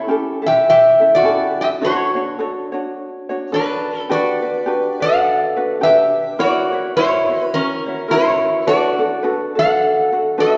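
A wet recital-hall reverb with a long 1.8-second tail surrounds this relaxed, languid Hawaiian excerpt, heard from farther back in the room. A metallic, nasal resonator slide guitar, played with fingerpicks, carries the melody up front, while a light, fingerpicked ukulele plays the accompaniment beneath it. Both play throughout the 10.6 seconds over a gently swung 4/4 feel, moving through A7, Dmaj7, Gmaj7, F#7 and Bm7.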